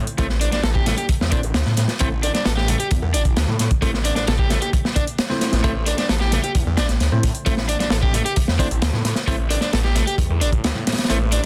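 Swaggering and funky, this breakbeat cut rides a gritty, saturated drum kit with a punchy kick and dark, rolled-off top, an overdriven electronic hi-hat, and faint vintage congas and bongos, while a thick, swirling phased detuned saw bass sits up front beneath an overdriven semi-hollow guitar riff softened by a low-pass filter and tape echo, and bell-like tine electric piano stabs carry 12-bit sampler grit and tape echo, all within a dense, heavily limited modern master.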